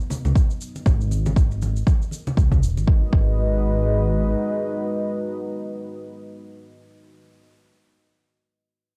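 This short cut from a longer afro house track has the hazy character of a home cassette recording with a light touch of reverb. It sits in G# minor at 119 BPM in 4/4, with a 16th-note swing that gives the warm, driving groove its lilt. A dark analog pad holds sustained chords from the start, moving from B/G# to G#m7 at 2.9 seconds; its detuned sawtooth and triangle tones, sub octave, slow attack, long release and chorus make it deep and moody, and it pumps against the sidechain. An overdriven electronic shaker and acoustic congas from a small room fill out the percussion until 2.9 seconds. Up front sit a deep, overdriven electronic kick, re-recorded in a large room, and a rumbling detuned saw bass with a fast attack and beating, sidechain-pumped tone. The bass carries on beneath the pad until 4.3 seconds, and the pad sustains to the end at 7.4 seconds.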